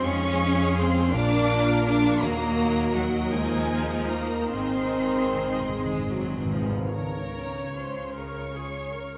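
In a rubato 6/8 with a slow dotted-quarter pulse of about 48-56 BPM, this tender classical passage in Db major moves gently through Db/F, Bb7, Ebm and Ab before settling back on Db, a short fragment lifted from a longer work. The first violins carry a lush, expressive melody with singing vibrato up high, while the second violins play a rich, close second line beneath them, and the violas supply a smooth, even bowed accompaniment. Cellos sit in the background with a silky bass line, underpinned far below by distant, warm, expressive double basses. A mellow, tight French horn section holds sustained chords until 6.6 seconds, and a very quiet, ringing harp adds fingerpicked arpeggios throughout. Timpani with soft mallets enter at 4.5 seconds for a round fill, all of it set in the moderate reverb of a scoring stage with a soft, warm glow.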